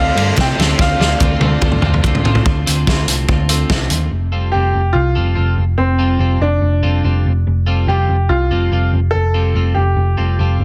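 Wistful yet upbeat indie rock cut from a longer piece, led by a brilliant, woody upright piano melody over two clean twelve-string electric guitar riffs, one bright and one warmer with lush chorus and analog delay that stops at 4.0 s, alongside a dark, round hollow-body bass and a gritty, saturated drum kit with a punchy kick and fat snare that plays a fill from 0.8 s, while a tine electric piano, a swirling phased string machine and crisp group handclaps add brief touches in the opening seconds, set in a small room under a dense, heavily limited master.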